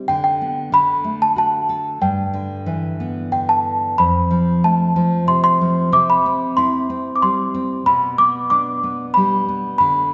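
This sleepy, gentle children's lullaby sways in 3/4 at 93 BPM in G major, tuned slightly low to A4 = 438 Hz, and is cut from a longer piece. A small celesta carries the sweet, bell-like melody high and up front from 0.1 seconds, its hard felt hammers giving a delicate sparkle, while a fingerpicked nylon-string guitar with fresh strings supplies a full-bodied, deep classical accompaniment from the start. The harmony turns toward F at 4.0 seconds before settling on G/B, all bathed in a wet concert-hall reverb with a soft, rounded top end.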